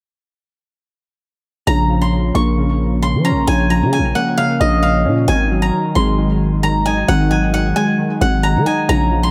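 A half-time trap groove in 4/4 drives this dark, hard-hitting hip hop cut from a longer piece, with zither, synth keys and bass entering together at 1.7 seconds and playing through to 9.3 seconds as the harmony moves from Bb minor to Ab5 at 5.3 seconds. Up front, a silvery steel-string zither played with fingerpicks carries the melody with a bright, ringing tone, while warbling, detuned lo-fi synth keys add mellow, nostalgic accompaniment soaked in chorus, and both parts trail off into dub echo. Beneath them, a growling, buzzy 808-style bass hits with a fast attack and decays, sitting forward in an echo-heavy mix with light reverb and small room ambience.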